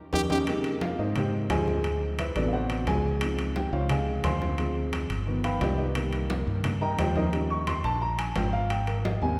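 A brief accent from the full band opens this fragment of sophisticated, danceable Afro-Cuban jazz, and from 0.5 seconds the upright piano takes a solo in Ab major at a brisk 175 BPM in straight 4/4. The piano sits up front with a woody, intimate character, its long sustain and audible action noise adding a close, slightly boxy presence as it moves through rich harmony from Abmaj9 through D13, Dbmaj9 and a Dm7b5 to G7b13 turn, on to Cm7 and Eb9 before landing back on Abmaj9. Underneath, a mellow fretless electric bass stays forward in the mix, dark and round with a direct tone. Congas sit in the background, low-tuned and ringing with soft hands and a compressed, saturated edge, while metal-shell timbales ring out with a small-room quality. The whole recording is bathed in a church-like space, its lush reverb trailing for 2.6 seconds.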